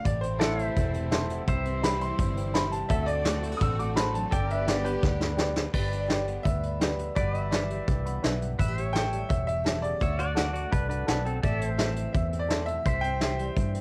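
A bright, woody upright piano leads this nostalgic, easygoing honky-tonk and classic country excerpt, carrying the melody over a brisk 169 BPM in G major. Beneath it, a full-bodied picked dreadnought acoustic guitar sits in the background, while a pedal steel guitar, played with fingerpicks and with volume swells and a subtle chorus, holds sustained chords. A distant, lush bowed string section adds sustained chords until 5.7 s, when the music moves into a new section after a brushed drum fill. The vintage brush kit is up front, with a punchy kick and dark cymbals, and a round, foam-muted fingered electric bass anchors the low end. A mellow baby grand piano with audible action noise adds background accompaniment and a short fill at 7.9 s, and a second, twangy pedal steel line appears at 10.2 s. The whole recording carries a homespun cassette-tape character in a lightly reverberant room.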